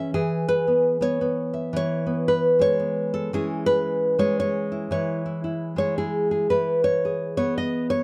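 A solo nylon-string guitar, fingerpicked up front with a warm, full-bodied, deep classical tone, opens this reflective, melancholic folk excerpt in a swung 3/4 at 113 BPM, moving from E to C#m/E and back to E in a dry, close 1970s-style small room.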